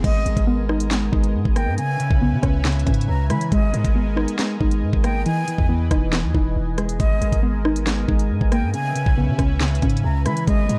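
Dark, warm production with a digital ambience frames this tense drill excerpt in G# minor, moving at 138 BPM in 4/4 with a half-time feel. Up front, the drill drum kit pairs a knocking kick and sharp snare with crisp hi-hats, rim clicks, handclaps and crash cymbal, all roughened by vintage 12-bit sampler grit. Beneath it, a long sustained 808-style bass with a deep sine tone and fast attack decays from its low notes. A mellow, clean electric guitar plays fingered, compressed arpeggios through delay, while a soft, round pluck built from detuned, wave-folded waves adds gentle accompaniment with chorus. A smooth, detuned sawtooth pad with a moving notch holds slow-attack chords through chorus, and a breathy concert flute with vibrato and tongued, unsteady notes carries a second line high above, trailed by delay. The harmony circles G#madd9, C#m7 and Emaj7 across the full 10.8 seconds, all parts playing throughout.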